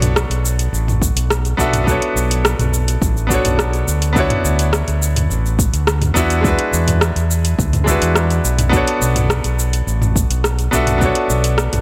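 A straight 4/4 groove at 105 BPM drives this wistful, smooth sunset chillout excerpt: an up-front deep house drum kit of metallic hi-hats, rim click, shaker and toms, overdriven and re-recorded in a large room, is joined at 1.0 s by a deep, overdriven electronic kick, while a punchy, amped fingered electric bass and a brilliant, polished baby grand piano with short sustain and tape echo move from Dmaj13 to E9 at 6.4 s and back to Dmaj13, set within light reverb and digital ambience.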